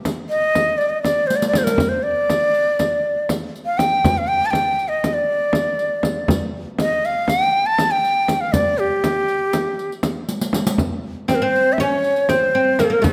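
A straight 9/8 groove at 240 eighth-note beats per minute drives this soulful, hypnotic excerpt of Turkish makam ensemble music in nihavent on G, with a deep, close frame drum played with soft hands and a riq's bright jingles carrying the pulse, and the drum adding fills at 1.3 and 10.3 seconds. Up front, a breathy, end-blown ney sings the melody between G4 and A5 with vibrato and soft attacks. At 11.3 seconds, in the closing section, a fretless oud joins with a woody, plectrum-plucked second line on double strings, and a moderate recital-hall reverb surrounds the ensemble.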